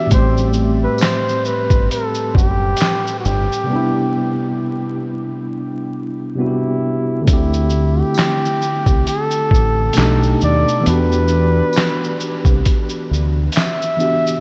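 A compressed, sampler-style drum kit swings at 67 BPM in 4/4, with a thumpy kick, a medium-tuned snare, hi-hat, handclaps and shaker setting a nostalgic, hazy lo-fi hip hop groove in E minor, and a break arrives at 3.7 seconds. A dark, round fingered electric bass sits under a worn, slightly out-of-tune tine electric piano, while a mellow, jazz-style flugelhorn carries the solo melody with vibrato, and a very quiet, jingly tambourine joins at 1.0 seconds. The dreamy mix is soaked in huge ambient reverb and vinyl crackle, its top end dulled, as the chords move from Am7 through Cmaj9 and D9sus4 to B7alt and Em7.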